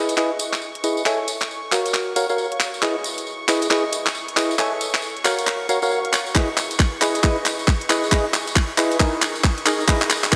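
A swung two-step garage groove at 136 BPM opens this soulful, late-night build-up, with handclaps and warm hats from the up-front garage kit and a jingly, saturated tambourine in the background, all running as one long drum fill until a tight electronic kick drum arrives at 6.4 s. Hollow, mellow organ stabs with chorus and delay punctuate chords moving from C#m9 through F#m9 and F#maj7 to E6 and D#5, while a bright chamber violin section holds sustained chords behind them, roughened by vintage 12-bit sampler grit and pumping against the beat. Lush hall reverb and bright 1980s-style digital production give the cut a spacious sheen.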